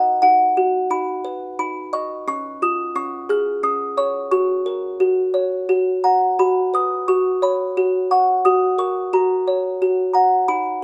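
A moderate stone-room reverb surrounds a lone music box, its delicate, tinkling tone slightly out of tune and placed up front. This innocent, tender children's lullaby moves at 88 BPM in a straight 3/4 in F# major, with the music box playing alone throughout this cut from a longer piece. Its plucked notes trace chords of B, C# and F# before a second section opens at 6.4 seconds on Bsus2 and settles back on F#.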